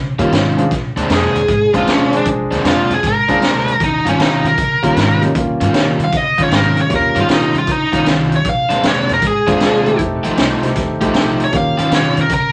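Electric blues shuffle at 155 BPM with a soulful, rollicking swing, cut from a longer piece, where a biting, bright lead guitar enters at 1.1 seconds over an up-front overdriven semi-hollow guitar riff, a clear, intimate grand piano with audible action noise, a raw garage drum kit with a high-tuned snare and boomy kick, and a woody, thumpy upright bass sitting in the background, all moving through Eb9, Bb9 and F9 chords in light reverb.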